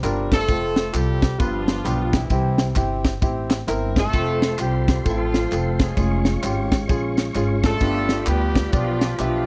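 Uptempo gospel in F major at 131 BPM, swung in 4/4, this short cut from a longer piece feels uplifting and soulful. A crisp acoustic drum kit sits up front in an airy studio room with a high-tuned snare, tight kick and ride cymbal, while a woody, dark upright bass plays pizzicato beneath it, and a clear concert grand piano with deep, open lows fills out the accompaniment. Handclaps, tambourine and egg shaker add a close, dry layer of percussion low in the blend. A mellow horn section in a tight, pop-style voicing carries the melody from 0.3 seconds, doubled in octaves with a smooth top. At 4.1 seconds a clean tonewheel organ enters in the background with sustained chords, shimmering through a fast rotary speaker and chorus vibrato, as the harmony moves from F through G7, C and a Db/F colour. The sound is that of a dry, close 1970s-style studio in a small room.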